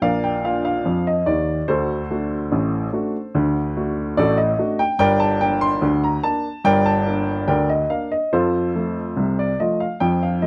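Closely miked and lightly reverberant, this 10.5-second passage from a longer ragtime piano piece features a woody, polished upright piano played solo and up front from G1 to C6, moving through Bb, D7, Gm and F at a playful, lively 72 BPM in straight 2/4, tuned to A4 = 444 Hz.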